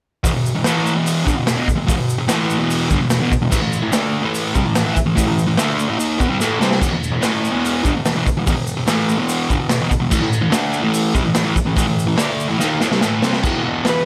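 Garage rock with a swaggering, raw attitude, cut from a longer piece and driven by a straight 4/4 pulse. A dark, double-tracked fuzz guitar sits up front playing a picked riff that moves between E5 and A5 power chords. The raw drum kit is punchy and saturated, with a gritty, rolled-off top, a medium-tuned snare, and a pumping small-room sound; it drops in fills at 6.4 seconds and again at 12.6 seconds. A grainy, bright egg shaker rattles along in the background. At 13.9 seconds an electric slide guitar, slightly broken-up, touches a single high note just as the clip ends, all under a light reverb.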